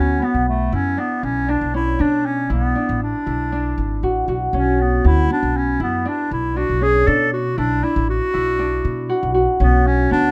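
The recording is dry and close, with the bright clarinet and the woody, dark upright bass both sitting up front. This pensive, restless piece of contemporary chamber music moves at 118 BPM in an uneven 5/4 with a straight feel, rooted in B minor on a single Bm chord throughout. The clarinet carries the melody in a classical style, playing solo between A3 and A4. Beneath it, a thumb-plucked Celtic harp rings out arpeggios between B3 and F#4, while the steel-strung upright bass plays pizzicato in the low register, reaching down to G#1. All three instruments play for the full 10.3 seconds of this brief passage, which is cut from a longer piece.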